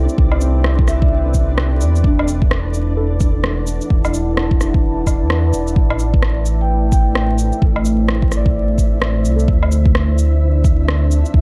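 Future garage at 129 BPM in A dorian, this melancholic, nocturnal excerpt moves with a swung sixteenth-note feel under a light haze of reverb and vinyl crackle. A dark, detuned saw bass rumbles up front with a beating, deep tone, while a moody ambient pad holds slow-attack chords drenched in chorus and reverb, both breathing with sidechain pumping alongside muted, felt-like synth keys that sit softly in the background with 12-bit sampler grit and analog delay until 9.7 seconds. A tape-warm electronic kick drives the groove from the front, joined by an electronic shaker, woodblock and rim click re-recorded in a large room, and a flickering, granular texture glimmers beneath everything. An airy, ringing vibraphone played with medium mallets drifts in briefly at 0.9 and 6.6 seconds, its metallic tone coloured by sampler grit and tape echo. The harmony moves from Am11/C through E9sus4 and Am11 before resting on D7(no3).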